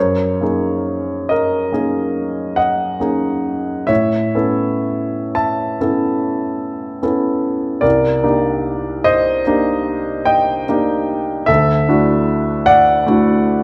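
Impressionist classical solo piano in a slow, rubato 9/8, this dreamy, serene excerpt features a clear, intimate grand piano placed up front with audible action noise, drifting through lush extended chords from Gb69 to Dadd9 across a range from C2 to A5, softened by a moderate recital hall reverb and a dark production.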